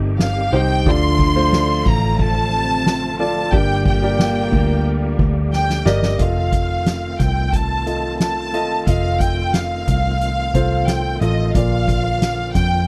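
A dry, close 1970s-style studio sound frames this dramatic, bittersweet piano-driven pop cut at 90 BPM in 4/4, where a lush, up-front violin section carries the melody over woody upright piano, a round, foam-muted picked electric bass, a soft-mallet drum kit with dark cymbals and a boomy kick, a reedy tonewheel organ with fast rotary speaker in the background, and a mellow French horn section that plays only until 5.8 seconds, dropping out partway through a drum fill that leads into the second section at 6.2 seconds.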